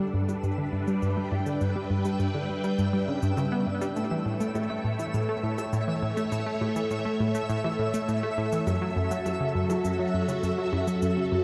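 Ambient, sequencer-driven space music at 102 BPM in a straight 4/4, mysterious and cosmic, cut from a longer piece and moving from G to A to F#m7. An up-front analog pluck riff, round and detuned with a filter sweep, chorus and delay, runs beneath swirling, vintage string-machine chords colored by ensemble chorus and phaser, while a twinkling granular texture with octave-up shimmer fades in on a high E. Overdriven percussion blips and shaker with delay sit in the background from 0.3 seconds and fade in, all bathed in a huge ambient reverb with a 7.8-second tail within a dark, warm production.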